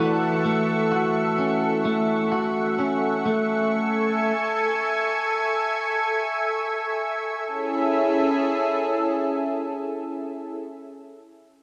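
A slow, straight four-beat pulse sets this dreamy, floating dream pop fragment, cut from a longer piece. An electric guitar, slightly broken-up and compressed, picks arpeggios up front, coloured by subtle chorus and tape echo, before falling away at 4.3 s. Alongside it, a lush pad of detuned sawtooth and square-wave voices holds sustained chords with a slow attack and long release, its thick, warbling, vintage tone shimmering through chorus until 10.5 s. The harmony shifts from A6 to Amaj7 at 3.7 s, and the pad alone carries the later passage. A wet echo-chamber reverb and a dark, warm production wrap the whole piece in a hazy glow.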